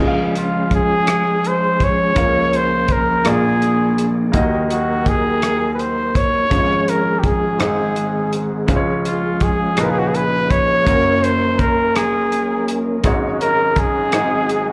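Slow gospel in 6/8 at 55 BPM in D-flat major, uplifting and jubilant, where a close-miked trumpet with vibrato and scooped notes carries the melody from 0.4 seconds over a polished baby grand piano with slapback echo, soft flute-like tonewheel organ chords turning through a slow rotary speaker, and a dry, dark soul drum kit of hi-hat, tight kick and rim click, all heard from a live gig through the venue's PA with club reverb and lossy compression artefacts in this brief cut from a longer piece.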